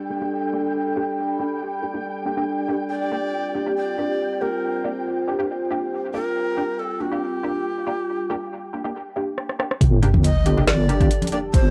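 A breathy, bright shakuhachi carries the melody from 2.9 seconds, its reedy, chiffy tone marked by vibrato and colored by cassette tape and dub echo, floating over a resonant sawtooth drone with moving overtones under a filter sweep, muted dub chord stabs, and a grainy, flickering granular texture in this brooding, dark deep dubstep excerpt in G minor at 139 BPM with a half-time feel. After a drum fill from the garage kit, with its woody snare and overdriven metallic hats, the drop lands at 9.8 seconds with a deep wobbling square-and-sine bass, a layered electronic kick and a sub drop impact, and very quiet congas follow at 10.0 seconds. The whole has the moderate studio ambience and character of a home cassette recording.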